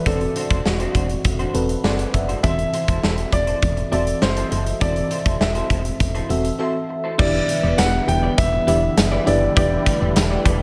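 Up front, a big, punchy rock drum kit with bright cymbals drives this nostalgic, urgent 1980s-style pop excerpt at 101 BPM in E minor, beneath a dark grand piano melody with digital delay, a mellow FM electric piano with tremolo that adds a fill at 1.5 seconds, a round FM bass and a slightly broken-up, chorused electric guitar riff in the background, before a warbling, detuned sawtooth pad enters at 7.2 seconds as the harmony settles on Em7 and a very quiet, jingly tambourine joins at 7.8 seconds.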